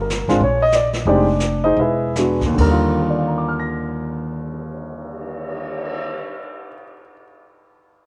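A swung 4/4 pulse that slows through the opening 2.6 seconds gives this playful jazz piano trio fragment its lilt, with an up-front, warm grand piano carrying the melody over Bbm, Fm9 and E9 chords toward an Ebmaj9 arrival, a woody pizzicato upright bass on steel strings that stops at 6.2 seconds, and a natural-sounding small-room brush kit of brushed snare, hi-hat, crash, cymbal swell and boomy kick, all set in a moderate plate reverb before the piano rings on alone to 7.2 seconds.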